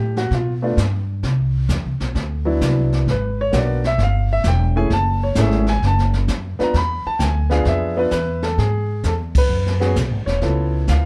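Playful and sophisticated, this short excerpt cut from a longer jazz piano trio swings in 4/4 as a clear, up-front baby grand piano carries a solo melody over rich chords like G9 and Cmaj9#11 for its first 8.6 seconds, alongside a woody, pizzicato upright bass and a distant, roomy brush kit with dark cymbals and a boomy kick, before the band hits an accent at 9.3 seconds in a dark production with light reverb.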